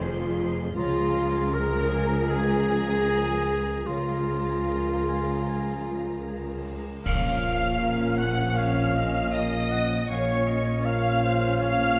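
Moving and sorrowful, this rubato cinematic film score in Bb minor unfolds at 78 BPM in 4/4, with a lush, vibrato-rich violin section carrying the high melody over a background viola section, ringing fingerpicked concert harp arpeggios, a close, focused cello section and a distant double bass section on the bass. From 0.8 seconds a second, more distant violin line joins a solo clarinet on a second line, while cymbal swell, bright clash cymbals and concert bass drum add a close, dry percussive surge from 3.9 to 8.5 seconds. At 7.0 seconds a very quiet, mellow French horn section adds sustained chords, and at 7.1 seconds, on a band accent that moves the harmony to Bb minor, a hollow, pure flute and soft-attacked oboe take up a second line in the background, all held in a wet concert hall reverb.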